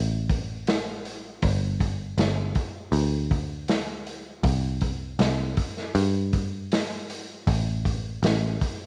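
A dark, round picked electric bass opens this brief psychedelic rock excerpt at 0.0 seconds, its foam-muted tone sitting up front in a low register. A vintage drum kit joins at 0.3 seconds with hi-hat, a tight kick and a medium-tuned snare, its muffled, lo-fi small-room sound placed close alongside the bass. Light reverb gives the hypnotic, mysterious groove a soft sense of space.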